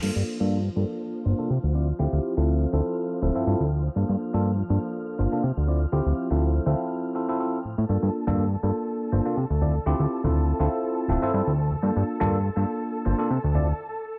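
Swung sixteenths give a gentle lilt to this groovy, funky slice of filtered disco house, cut from a longer piece. A fat, thick analog bass sits up front with a saturated, detuned sawtooth-and-square character and a plucky, fast-attack filter, while a bell-like tine electric piano plays bright, clean accompaniment through a phaser and low-pass filter. Behind them, a lush studio string section holds smooth, bowed chords with gentle vibrato, sounding distant and carrying a vintage 12-bit sampler grit. Very quiet, close maracas and congas join at 7.9 seconds, adding an acoustic touch to the groove. The harmony alternates between Gm7 and Dm7, a filter sweep runs across the whole passage, and a brief break arrives at 13.8 seconds, all set in light reverb with a digital ambience.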